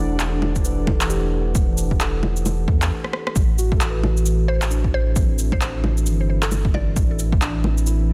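A round, up-front sub bass anchors this nocturnal, melancholic future garage excerpt, pumping against a punchy, overdriven electronic kick and a layered kit of handclaps, shaker, bongos and rim click over a swung 16th-note groove. Breathy pad chords and muted, felt-like synth keys with tape echo move from Em7 to Am7, while a faint wind-like noise texture drifts in the background until a brief stop at 2.9 seconds, followed by a drum fill at 3.0 seconds. A woody, mallet-like synth pluck with chorus and phaser carries the melody from 4.5 seconds, all set in a dense, heavily limited master with vinyl crackle.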